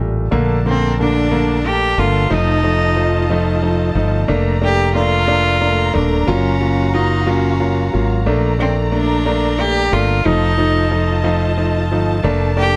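A rich, softly bowed cello carries the tender melody from 0.7 seconds in this swaying six-eight pop ballad excerpt, over a clear grand piano with audible action noise, a round, dark fretless electric bass, and a lush studio string section holding sustained chords with vibrato, all in light reverb.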